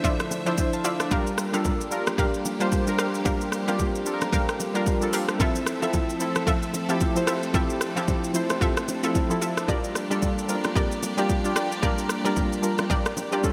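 This soulful, hypnotic amapiano excerpt opens with its full band at once: round, sawtooth-edged analog keys carrying the chords up front through chorus and tremolo, a layered deep house drum kit of deep kick, metallic hats, rim click and shaker, and a lush bowed string section holding sustained chords with vibrato. The groove moves at 112 BPM in 4/4, with a 58% swing on the sixteenths. From the background, a bright analog pluck built from detuned sawtooth, pulse and square waves with a sub octave and a noise layer adds short stabs, colored by chorus and delay, while the focused strings pump against a sidechain. Very quiet congas and bongos, played with soft hands and heard close and dry, sit beneath the kit. The harmony passes from Dm9 to Gm7, then to Fmaj7 at 5.4 seconds and Bb6 at 9.7 seconds. The mix sits in a moderate hall reverb with a bright 1980s-style digital sheen.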